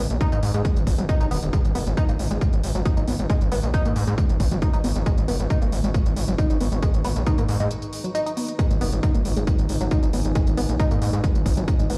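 Driving and hypnotic, this peak-time techno excerpt in G# minor moves at 136 BPM in a straight 4/4, anchored by a heavy, up-front electronic kick and smooth, tape-warm hi-hats that pump with sidechain. A gritty, nasal sawtooth bass pushes hard up front with aggressive saturation, while a tight, detuned synth riff with a filter pluck adds chorus, overdrive, delay and the same pumping motion, and a deep, moody pad fades in behind them, softened by chorus and its own reverb. The whole mix sounds as if played on a big sound system in a bare room with large studio reverb, and a short break arrives at 7.7 seconds before the groove resumes at 8.6 seconds.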